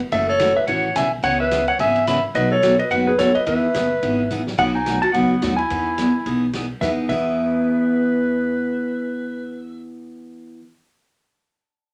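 A clean lap steel guitar carries the melody in this cheerful, down-home western swing excerpt, its fingerpicked slide lines compressed and shaped with volume swells. Close behind, a breathy clarinet plays a jazz-style second line up front, clear-toned with light vibrato and scooped notes, while a bright, full-bodied jumbo acoustic guitar picks out the accompaniment. An upright bass adds a woody, thumpy pizzicato foundation, and a vintage drum kit recorded in a small room sounds gritty and saturated, with dark cymbals, a punchy kick and a medium-tuned snare. At a brisk 215 BPM in 4/4 with a swung eighth-note feel, the harmony moves through F#m7, C#m7, B7 and Emaj7 in E major. The drums play a fill at 4.3 seconds and drop out at 7.2 seconds, leaving the other parts in a wet studio reverb.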